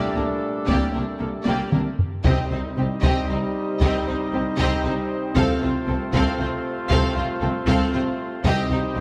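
A moderate concert-hall reverb surrounds this dark, epic cinematic orchestral excerpt in C dorian at 77 BPM in 12/8, where lush, vibrato-laden violins carry the melody over a focused second violin line, rich violas, woody cellos and distant double basses holding C, while bright trombones, clear woodwinds and mellow French horns sustain chords, heavy-stick taiko drums enter at 0.7 seconds with a fill at 1.5 seconds, and very quiet, round timpani on soft mallets sound at 2.2 seconds and again near the close.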